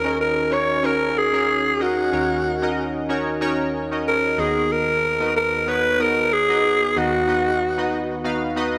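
A growling alto saxophone and round, detuned analog keys begin together in this nostalgic, dramatic pop fragment, which moves with a light swing over two chords, Ebm7 and then B/D#. Up front, the raspy, breathy saxophone carries the melody with vibrato and scooped notes, while the keys, treated with chorus and a filter sweep, supply decaying square and sawtooth tones beneath it. A lush hall reverb surrounds the pair, and the saxophone drops out at 8.3 seconds, leaving the keys to ring until 8.8 seconds.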